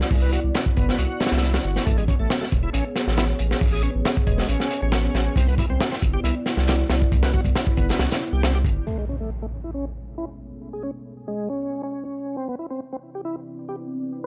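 Playful and funky, this breakbeat excerpt runs at 137 BPM in A major, opening with a crunchy, up-front drum kit with a punchy kick and high-tuned snare, a thick, saturated sub bass, and a moody, detuned analog pad pumping under sidechain, while a bright, shouting tonewheel organ riff with key click, slow rotary speaker and sampler grit enters at 0.2 seconds. At 8.9 seconds the drums and bass drop out as an electronic impact hits and a filter sweep moves across the pad, leaving the organ and pad to carry the Cmaj9 and Amaj9 harmony. The whole has a dry, gritty hardware sound colored by cassette tape and transformer saturation.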